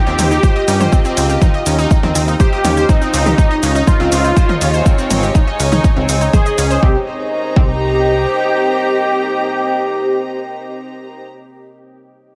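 A thick, bright unison lead sings over a deep, moody pad and intimate bowed chamber strings, all pumping to the sidechain, as plucky analog bass, detuned arpeggiated plucks with digital delay, deep house hats, shakers and toms, and a punchy, tape-warm kick drive this melancholic, hypnotic melodic techno excerpt in C phrygian at 122 BPM, moving from Ebadd9 through Dbsus2 to Cm7 at 6.8 s. There the hats, shakers and toms fall away, and the kick, plucks and bass follow within about a second and a half, while the lead, pad and strings carry on.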